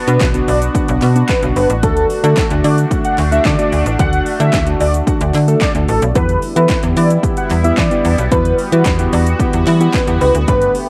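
Through a light reverb and the haze of a home cassette recording, this energetic, bittersweet dance-pop fragment at 111 BPM sets a thick, dark unison lead melody over bright, resonant pad chords and round analog keys that pump with sidechain, a snappy, metallic FM bass up front, a punchy, overdriven house drum kit with cracking snare and metallic hats, and very quiet, crisp group handclaps, moving from Bm to D at 1.8 seconds and Em at 6.2 seconds.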